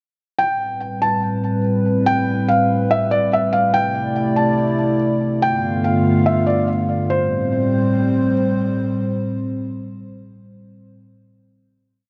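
A dark, hazy production bathed in a lush hall reverb frames this short, melancholic hip hop piece in A minor, moving at 143 BPM with a half-time feel. A felt-muted upright piano carries a sparse, looping melody with a soft, intimate tone, audible action noise and a low-pass filter with digital delay, stopping at 8.3 seconds. Beneath it, a deep, detuned analog pad with chorus sustains chords from Am9 through C69 and G9 before resting on a final Am7 chord that lingers until 11.0 seconds.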